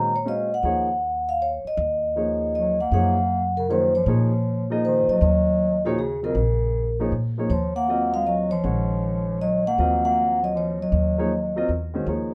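A mellow soft-mallet vibraphone carries the melody from the start, its metallic ringing tone up front, over a natural-sounding grand piano and a woody, thumpy pizzicato upright bass, all settled on a single Ebm9 chord in a swung three-four modal jazz groove. At 2.6 seconds a warm bass clarinet enters with a second line, punchy and smooth on top, colored by vibrato and scooped notes. Cut from a longer piece and set in a moderate club reverb, the passage feels hypnotic and spiritual.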